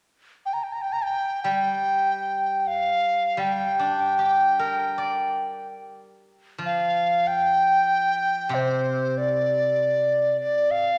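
Chinese traditional chamber music in free time, graceful and tender, with a mellow large dizi carrying the melody up front from 0.5 seconds, its pure, buzzing bamboo tone marked by a crisp chiff, while a bright, silvery steel-string zither, played with fingerpicks, rings softly beneath it from 1.4 to 10.4 seconds in a recital hall's lush reverb, in a short cut from a longer piece.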